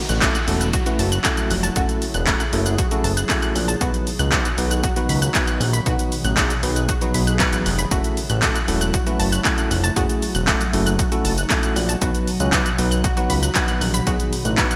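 A punchy analog drum machine with gated reverb drives this confident dance-pop excerpt at 117 BPM in F# dorian, its kick, snare, handclaps, hi-hat and shaker up front beside a fat, saturated sawtooth bass, while a bright, detuned unison pluck plays arpeggios through chorus and delay, a tine electric piano adds clean accompaniment, a glassy FM pad holds ethereal chords in the background over the F#m7 and B changes, and a very quiet downlifter sounds during the opening 3.8 seconds, with the mix set in a plate reverb and a 1980s-style digital sheen.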